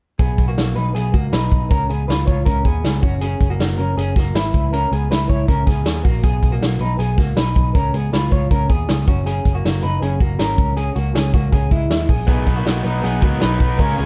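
This short excerpt of jangly indie pop opens at 0.2 seconds with an electric guitar played through a small old amp, picking arpeggios in a dark, slightly broken-up, lo-fi tone coloured by harmonic tremolo and digital delay. Alongside it from the start, a vintage muted picked electric bass gives a round, foam-muted thump, and a vintage acoustic drum kit sits up front with a punchy kick, a medium-tuned snare and hi-hat, its top end rolled off in a natural studio room. The tempo is a brisk 159 BPM in a straight 4/4, and the youthful, bright mood comes through in B major as the chords cycle through B, C#, F#sus2 and C#m. At 12.3 seconds, as the progression returns to B, an overdriven electric guitar joins as accompaniment, adding a warm, crunchier layer through to the end of the excerpt at 14.1 seconds. The production is dark and warm with little reverb, keeping the sound close and intimate.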